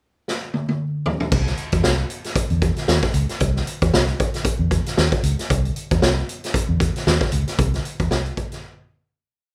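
Playful and funky, this short, dry home-demo funk piece opens with a gritty garage drum kit fill at 0.3 s, its boomy kick, snare, hi-hat, toms and crash setting up a syncopated groove with ghost notes, before a dark, round, foam-muted electric bass enters at 1.3 s with a punchy syncopated riff anchored on the downbeat, full of muted ghost notes and chromatic approach notes, as the breakdown fades out and the drums stop at 8.6 s.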